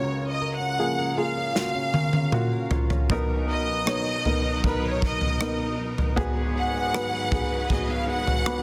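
A hopeful, emotional pop ballad in F# major at 78 BPM opens with a focused, vibrato-rich violin section carrying the melody up front. Beneath it sit a woody, slightly detuned upright piano and a full-bodied jumbo steel-string guitar fingerpicking arpeggios in the background. At 1.6 seconds an airy, polished acoustic drum kit enters with a fill, its punchy kick and medium-tuned snare sitting up front, with soft clipping on the snare. At 3.1 seconds a clear bowed string section adds sustained chords as the harmony moves from F#maj7/C# to Bmaj7 and G#m7, all within light reverb and small room ambience on a dense, heavily limited modern master tuned to A4 = 436 Hz.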